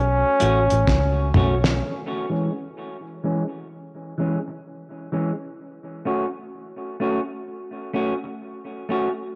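This short dub reggae excerpt opens with a brilliant, forceful trombone melody over a dark, round, foam-muted fingered electric bass. The trombone is coloured by cassette tape and tape echo, and the bass by transformer saturation. At a slow 64 BPM in 4/4 with swung sixteenths, the mood is hypnotic and heavy as the harmony moves from F#m to C#m and back to F#m. A cloth-damped, thuddy drum kit with a fat snare and tight kick joins shortly after the start and plays a fill before it stops at 1.8 seconds, together with the bass. The clean, picked semi-hollow guitar then carries on alone, its hollow-body tone shaped by vibrato, a low-pass filter, cassette tape and tape echo, with a filter sweep running through the rest of the piece. A moderate, lush hall reverb surrounds the parts, and the whole was captured at home on cassette.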